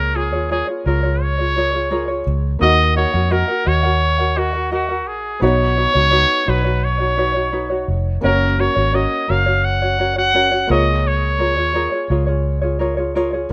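A straight 4/4 groove at 85 BPM carries this easy-going, carefree acoustic pop excerpt, where a clear, up-front solo trumpet sings a vintage pop-style melody with light vibrato and scooped notes until 12.5 s, over a dark, round, punchy foam-muted electric bass, a thumb-plucked tenor ukulele and a mellow felt-muted upright piano with audible action noise sitting in the background, all moving through C#6, D#m, Badd9 and F# in a rough home-demo mix with studio ambience.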